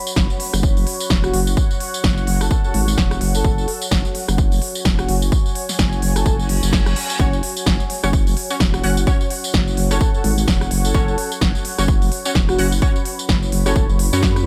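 A bouncy, swaggering bass house groove at 128 BPM in 4/4, swung at 58% on the sixteenths, drives this excerpt in F# minor, built on a punchy, tape-tinged electronic kick and an overdriven big-room kit of crisp hats, punchy snare, rim click and tambourine in a small room ambience. Up front, a nasal, resonant vowel-sweep wobble bass growls between E1 and F#2 with chorus, overdrive and sidechain pumping. Beneath it all sits a deep, moody ambient pad that evolves slowly with a sub octave, chorus and its own reverb, pumping in time with the kick. A soft, breathy flute-like lead with vibrato drifts in the background from 1.2 seconds, haloed by lush chorus and tape echo. A reverse cymbal at 6.5 seconds ushers in bold, bright orchestra-hit-like synth stabs at 7.2 seconds, detuned and ring-modulated with a filter sweep, reverb and tape echo. The mix overall is dry and loud, its weight carried by the bass and kick.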